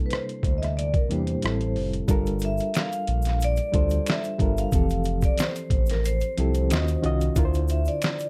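R&B and neo-soul at 91 BPM, this late-night, introspective fragment of a longer piece sets a reedy electric piano with fast tremolo under a metallic, ringing vibraphone melody played with medium mallets, its slow motor vibrato carried by slapback echo and plate reverb. Up front sit a gritty, pitched-down boom bap sampler-style kit with a thumpy kick and medium-tuned snare, and a smooth, detuned sawtooth-and-triangle synth bass that glides between notes with portamento and vibrato. A close, dry egg shaker and finger snaps join in the background at 2.1 seconds as the harmony moves from C13 and Am7 through Gm9 and Fmaj9 to Ebm9 and Dm9, all within a dark production with light reverb.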